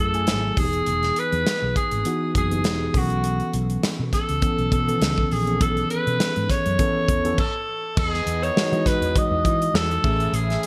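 A raspy, forceful alto saxophone leads this breezy, urban slice of polished 1980s jazz-funk pop over mellow chorused electric piano, a round, dark fretless bass and a punchy, gated-reverb drum kit, all pausing in a brief stop at 7.4 seconds before a smooth background horn section joins at 8.0 seconds amid bright digital production.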